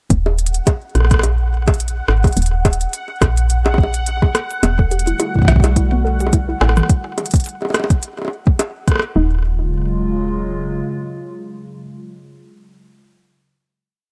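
IDM at 106 BPM with a light swing, melancholic and intricate, where a soft, tape-warm kick in a broken pattern and a glitched, ever-changing kit of crisp hats, bongos and rim clicks with delay sit up front over long gliding notes from a woody, round FM bass, while a bubbling stepped-filter texture holds a high Gb5 from the start, a dusty, mellow pluck enters at 4.6 s with a 9-step arpeggio loop drifting against the bar, a warbling, nostalgic tape-like pad with chorus, phaser and sidechain pumping swells in at 5.1 s, and the groove gives way at 9.2 s to a final Ebm11 chord, all wrapped in a digital, lossy ambience.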